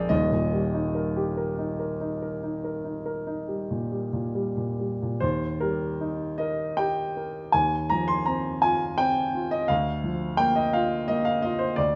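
Classical romantic nocturne for solo piano, tender and serene in mood, unfolding in 12/8 with a free, rubato feel. A concert grand carries the whole piece, sounding warm and open with a deep bass and a short sustain, placed up front in the sound. Its writing spans the range from the lowest bass register up into the upper treble. The music opens in one section, then moves into a contrasting passage at 5.2 seconds, where the harmony shifts around 7.5 seconds and again near 9.7 seconds. Moderate reverb from a large studio surrounds the instrument, and the tone is gently rounded, with the highest frequencies softened. This twelve-second passage is taken from a longer work.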